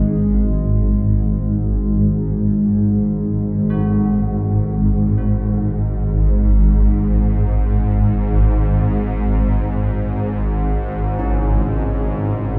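A swarming, detuned drone opens this ominous, vast dark ambient excerpt in free time, its granular sine tone sitting up front in the low register around a G#7sus4 chord, with a bronze singing bowl ringing faintly beneath from 0.4 s. At 3.7 s, old church bells fade in with clangorous, bright arpeggios in the background, their beating minor-third overtones carried by an analog delay. The echo-heavy mix wraps it all in a wet, chamber-like reverb.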